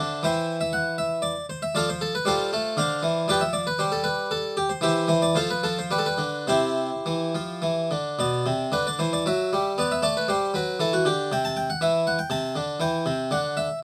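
A solo harpsichord opens this short cut from a baroque-style classical suite movement, its plucked, brilliant tone with octave strings and a French-style voice sitting up front across a range from B2 to A5. The mood is serene and flowing, in a rubato 3/4 at roughly 103-124 BPM, moving from C major through chords such as Dm7/F, G7/F and F before settling into G major at 8.2 seconds. The close, detailed recording is dry, with little reverb, so every pluck comes through clearly.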